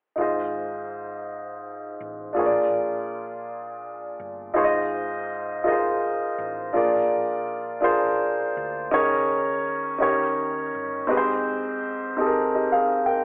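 Jubilant and hopeful, this slow gospel excerpt in 6/8 at 55 BPM sets a warm, woody upright piano with long sustain up front over a dark, round, punchy hollow-body electric bass sitting in the background until 11.1 seconds, moving through Ab6 and Bb7 toward Eb7sus4, Eb7 and a closing Abmaj7, all colored by a large studio reverb and the warbling pitch drift of worn cassette tape with a telephone-like tone.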